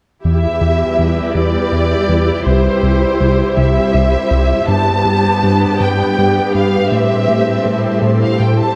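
In a slow, straight 6/8 at 54 BPM, this futuristic, relentless cinematic excerpt in E minor moves through Em, C, G and Am7 as an up-front, focused violin section carries the vibrato melody over a lush viola section, a fat, detuned analog bass riff, a distant cello section in the background and an ethereal, warbling pad with ensemble chorus entering at 0.9 seconds, all set on a moderate scoring stage reverb.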